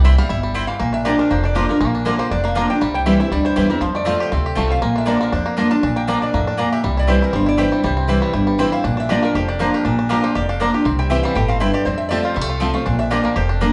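Bluegrass at a driving 239 BPM with a light swing, this virtuosic cut from a longer piece sets a twangy, percussive fingerpicked banjo melody over an up-front, dark picked acoustic guitar with old strings and a thumpy, woody pizzicato upright bass, while a double-strung mandolin adds stabs. A metallic, nasal lap resonator guitar played with slide and fingerpicks joins the melody at 0.7 seconds, over chords moving among C, Bb and F. The band plays live in one room, bathed in a wet large-studio reverb with a softened top end.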